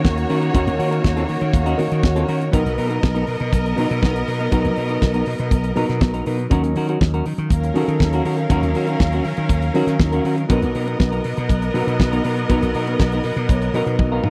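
A sultry, glamorous disco groove opens at once with drums, slap bass, piano and strings together, and a semi-hollow electric guitar joins a split second later. The damped 1970s kit sits up front with a fat snare and tight kick, while the bright, punchy slap bass, also forward in the mix, carries the low end. Behind them, the clean, dark guitar and an intimate concert grand, its action noise audible and its low register deep, fill out the accompaniment, with the piano adding fills at 1.0 and 13.0 seconds. A clear, focused string section bows a second line with vibrato, biting yet smooth on top. The harmony alternates between Ebm7 and Bmaj7 in a dry, close studio sound, and this excerpt from a longer piece closes with a drum fill at 14.0 seconds.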